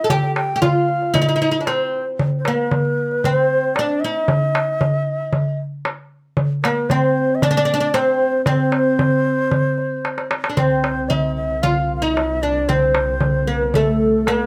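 Lightly reverberant, this festive Arabic maqam ensemble piece in C maqam rast, tuned to A4 = 439 Hz, moves at 114 BPM in a straight 4/4. A bright, woody, fretless oud carries the melody up front through a plate reverb, while a breathy, reedy, close-miked ney adds a second line with vibrato and a small clay-shelled darbuka sounds high and vintage. The darbuka plays a fill at 10.0 seconds, and a dark, distant bowed double bass enters at 10.6 seconds to hold a low drone until the cut at 14.5 seconds.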